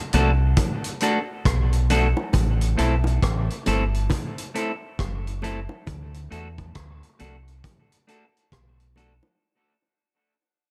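A round, deep fingered electric bass anchors this heavy, meditative dub reggae excerpt, sitting up front with a clean, picked electric guitar soaked in dub echo and a vintage drum kit whose punchy kick, hi-hat and rim click have a rolled-off top, while low-tuned bongos, also echoed, hit hard in the background over a swung 4/4 groove moving between D and A minor, the dark, lightly reverberant production fading out across the full 9.4 seconds.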